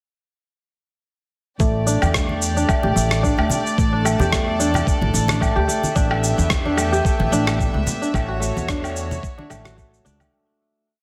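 A dense, heavily limited modern master with light reverb and small-room ambience frames this short, earthy organic downtempo piece in A mixolydian at 110 BPM, its 16ths lightly swung and its harmony moving from A7sus4 through G6/A to Dmaj9/A. Up front, a crisp, ringing, fingerpicked kora repeats a 10-step arpeggio loop that drifts against the bar, shaped by a low-pass filter sweep and digital delay. Beneath it sit a growly, woody pizzicato upright bass riff and a dark, sul tasto string pad, both pumping with the sidechain, while a thumpy electronic kick and a gritty, tape-tinged layer of cabasa, woodblock and rim click, with soft clipping on the snare, drive the groove from 1.6 s, and bongos and congas join in the background at 2.0 s; a very quiet, metallic bronze singing bowl holds a meditative high note with slow beating as the piece fades out from 7.4 s, the kora ringing on alone at the close.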